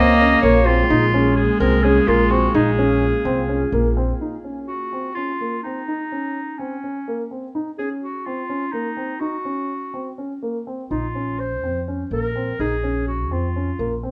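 A moderate recital-hall reverb surrounds this urgent, hypnotic contemporary chamber piece in Bb minor, cut from a longer work and moving in a straight 7/8 at 252 eighth-note beats per minute. Up front, a dark grand piano plays arpeggios throughout, and a clear, classical-style clarinet carries the solo melody with a distant, roomy quality. In the opening bars a single bowed viola adds a second line with a warm, reedy gut-string tone in period style, while a glassy, ethereal FM pad sits in the background with slow-attack sustained chords, ensemble chorus and its own reverb. An upright bass, played pizzicato on steel strings with a woody acoustic sound, anchors the low end, and the harmony moves from Gbadd9 to Fm/Bb. By 4.2 s the viola, pad and bass have dropped away, leaving clarinet and piano over a Bbmadd9 chord until the bass returns at 10.9 s.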